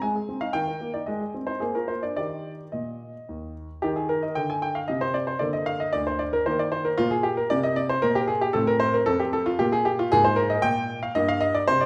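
Bathed in a wet recital-hall reverb, this elegant, graceful fragment of a classical-period sonatina in 3/4 features a clear, intimate grand piano played solo with rubato, its short sustain and audible action noise sitting up front as the music moves into a new section at 3.8 seconds, drifting through colourful chords before it is cut off at 11.9 seconds.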